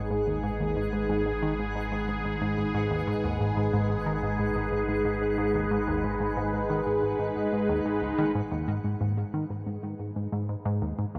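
A tight, nasal sequenced sawtooth riff with a plucky filter drives this hypnotic, cosmic stretch of ambient space music at 91 BPM, colored by chorus and tape echo. Beside it, a swirling, detuned analog pad sustains bright G#m7 chords through phaser and chorus, over a warbling vintage drone and a faint, sparkling granular shimmer that both drop out near 8.3 seconds as the harmony settles on G#m. A lush hall reverb soaks the whole mix in a dreamy wash in this section cut from a longer piece.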